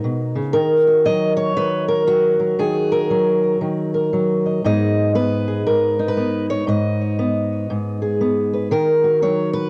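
Swung eighth notes at 117 BPM in 4/4 give this short fragment of a longer folk piece an easy, rolling lilt. A lone fingerpicked steel-string acoustic guitar carries the whole 9.7 seconds, its dark, auditorium-sized body sitting up front with a touch of finger squeak on the strings. The harmony moves between a rootless G#madd9 and D#m, returning to the G#madd9 at 4.6 seconds before settling back on D#m, in a tuning pitched slightly high at A4 = 441 Hz. The guitar passes through cassette tape and tape echo, while light reverb and a home cassette recording lend the sound an intimate, worn character. The mood is nostalgic yet hopeful.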